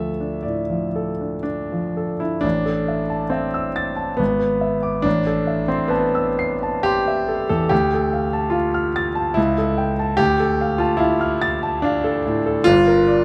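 In a flexible, rubato triple metre drifting between 58 and 74 BPM, this romantic character piece for solo grand piano moves with a bittersweet, stormy temperament. Cut from a longer work and set in A minor with the instrument tuned to A4 = 438 Hz, it opens on a D minor harmony before a new section arrives at 2.4 seconds on A minor. The harmony then passes through E7/G#, back to A minor, on to D minor with an A7/C# leading back to it, and closes on a rootless Em7b5/G. The piano spans a broad compass from G1 to C7, its tone clear and natural, placed up front with an intimate closeness that lets the action noise of the keys and mechanism come through. Close, detailed microphones capture the instrument inside a moderate large studio reverb of about 1.2 seconds, giving the sound a sense of space while keeping the playing immediate.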